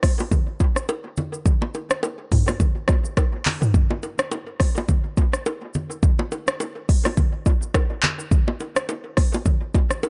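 A swung afrobeats groove at 105 BPM in 4/4 carries a romantic, sunny mood through this 10-second cut from a longer piece. An up-front, layered electronic deep house kit drives it with a deep kick, smooth hi-hats, handclaps, rim clicks, shaker and toms, while bongos and congas sit lower in the mix with hard-handed, close acoustic tones thrown into dub echo. The whole track lives in a dim, echo-heavy digital ambience with its top end rolled off.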